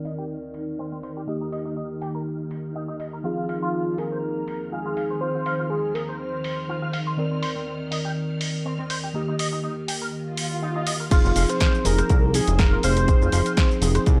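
A sleek, groovy nu-disco excerpt opens with a mellow tine electric piano carrying slapback echo, a lush, full-bodied string machine pumping under sidechain, and a layered house drum kit with a punchy snare, bright hats, rim clicks, shaker and crash. An electric guitar through an envelope filter adds a clean, twangy picked riff, colored by ensemble chorus and its own slapback echo. At 3.2 seconds a thick, detuned unison lead with vibrato takes the melody, treated with cassette tape character and analog delay, while a filter sweep shapes the opening stretch over chords moving among Cm9, Eb and Fm7. An electronic swell arrives at 10.3 seconds, and at 11.1 seconds the drop lands as an up-front electronic kick and a glossy, retro chorused synth bass built on pulse and sawtooth waves enter, with the lead returning. A light digital reverb gives the whole a polished, produced sheen.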